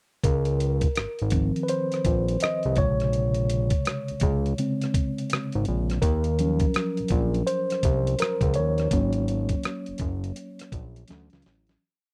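A mellow, clean tine electric piano takes the solo spotlight with held, rootless chords moving through Dbmaj7, Bbm9, Ebm9 and Ab9sus4 in this smooth, warm neo-soul R&B piece at 83 BPM with a swung sixteenth-note feel, carried by a fat, detuned analog bass line with muted ghost notes and slides and a gritty, compressed sampler-style soul drum kit with a thumpy kick, captured in a dry, close 1970s-style studio sound before a fade-out from 8.9 seconds and a drum fill at 11.1 seconds.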